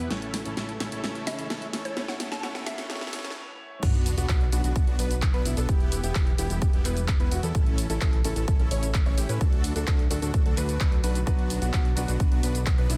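A woody, warbling synth pluck carries the melody over a clear grand piano and a huge, detuned supersaw riff pumping against a fat analog bass, with a lush, very quiet pad sustaining chords beneath, as a drum fill and filter sweep drive this anthemic, emotional festival progressive house build-up. After a brief stop, the drop lands at 3.8 seconds as a punchy, up-front electronic kick joins the big-room kit with its huge snare, handclaps, hi-hat, cabasa and crash, and a dark, boxy grand piano plays arpeggios, while a very quiet riser and sub drop mark the impact. The dense, heavily limited mix is dry, with dub echo on the pluck, pianos and supersaw.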